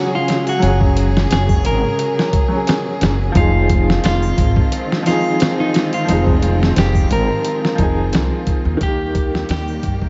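Soaked in church reverb and vinyl crackle with a dreamy haze, this dark, brooding trip hop excerpt at 88 BPM sets a clean, picked electric guitar melody with sampler grit and tape echo over a clear, woody upright piano with tremolo, a lush bowed string section in the background, a gritty sampler-style drum kit with a thumpy kick up front, distant triangle and tambourine, and a growly pizzicato upright bass, moving from Gbsus2 to Fm7 to Eb before fading out from 7.0 seconds.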